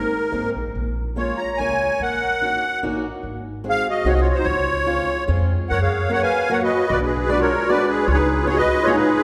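A reedy, shimmering musette accordion sits up front and carries the melody in this short excerpt of a whirling, charming musette waltz in 3/4, moving at roughly 142-153 BPM with a rubato feel. Beneath it, a smooth-topped clarinet in classical style plays a second line, adding a warm voice to the reedy lead. A boxy, fingerpicked swing-style acoustic guitar supplies the accompaniment, while a dark, woody upright bass played pizzicato on gut strings gives a thumpy foundation before dropping out at 8.6 seconds. The harmony opens in Db major and shifts to F# major at 5.7 seconds, where a new section begins and runs to the close at 9.2 seconds. The ensemble is heard from further back in the room, bathed in a wet concert hall reverb with a 1.9-second decay.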